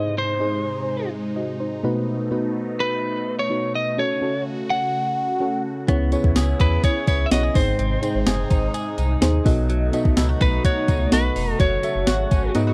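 A dry, close, 1970s-style studio sound frames this moody, nostalgic 1980s-style pop clip at 126 BPM, where a slightly broken-up lead guitar with tape echo carries the melody up front over a round, warbling FM electric piano and a swirling, phased analog pad, moving through G#, B7, F#m and C#m7. At 5.9 seconds a thumpy, overdriven 12-bit drum machine, a deep sine-and-triangle sub bass with octave, and a clean, compressed direct-recorded guitar riff with analog chorus and tape echo join, while a distant, jingly tambourine sits very quietly in a large room. A band accent closes the passage as a punchy, detuned sawtooth polysynth stab enters at 12.6 seconds.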